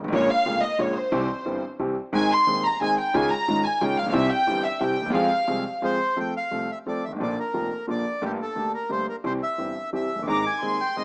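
A tango in F minor at 178 BPM in 3/4, this short excerpt from a longer piece moves with a rubato feel and a nostalgic, playful mood. A clear concert grand piano sits up front throughout, its smooth, vintage tone reaching down into deep bass, while a pizzicato upright bass with gut strings adds a woody, thumpy pulse in the background. Over the piano and bass, the violin section carries the opening as the featured solo voice until 6.2 seconds, its bowed, period-style gut-string sound close and up front with light vibrato. At 5.8 seconds the reedy bandoneon takes over the melody, warm and up front, and the violins return briefly near the end at 10.3 seconds. The harmony wanders from Bbm7 through C and Dbadd9 to Fm, then turns to F, Bb and Gmadd9 in the second section. Light reverb and small room ambience give it the rough feel of a home demo heard through a small speaker.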